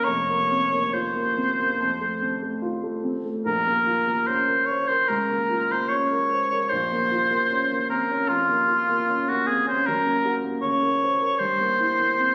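This is a romantic classical duo for oboe and grand piano, solemn and melancholic in Bb minor, moving in 4/4 with a rubato feel somewhere between 67 and 80 BPM. The warm oboe carries the melody from start to finish, singing with a light vibrato and a smooth top in a classical style, placed up front as the solo voice. Beneath it, the grand piano supplies the accompaniment across a deep range, its tone dark and mellow with a natural, short sustain, also sitting close. The harmony opens suspended on Fsus4 before settling on F, then at 3.5 seconds a new passage turns to Bb minor and later moves through Gb toward a C7/G chord near 11.4 seconds. The sound is that of a phone capturing the players in a concert hall with a moderate two-second reverb, with added studio reverb and compression, and the fragment is cut from a longer piece.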